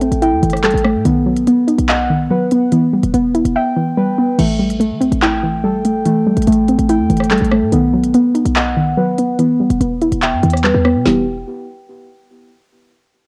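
A dark, ominous half-time drill beat opens with a soft, round pluck and up-front, felt-like synth keys playing arpeggios, both treated with chorus and cassette tape and the keys also trailing analog delay, over a punchy, tight 808-style bass and an electronic drill kit with a woody snare, crisp hats, rim clicks, handclaps and crash that drops out from 3.6 to 4.4 seconds before a filter sweep carries the fragment to 11.1 seconds.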